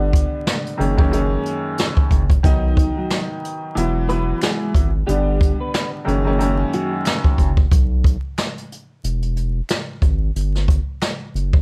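Soulful and warm, this swung boom-bap hip-hop excerpt sets a clear, woody, slightly detuned upright piano over a deep, saturated sub bass and a roomy jazz brush kit with a boomy kick, beneath light reverb and vinyl crackle. At 2.5 s a clean, picked electric guitar carries the melody through ensemble chorus and analog delay, and very quiet finger snaps join at 3.1 s. The piano drops out at 7.5 s, leaving the bass, brushes and snaps.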